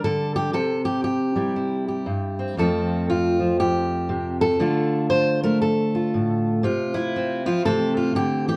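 A lone fingerpicked steel-string acoustic guitar carries this folk excerpt, sitting up front with the full-bodied voice of a dreadnought and the ring of fresh strings. The mood is warm and nostalgic, carried by a swung feel in common time. Across its 8.6 seconds the harmony moves from G5/D to C, then through Fadd9 and Dm before settling on F5/C and closing on C6. The guitar spans low bass notes up into its upper register, and a little finger squeak adds an intimate, human touch. A moderate stone-room reverb gives the recording the air of a live performance in a single space, and the passage is cut from a longer piece.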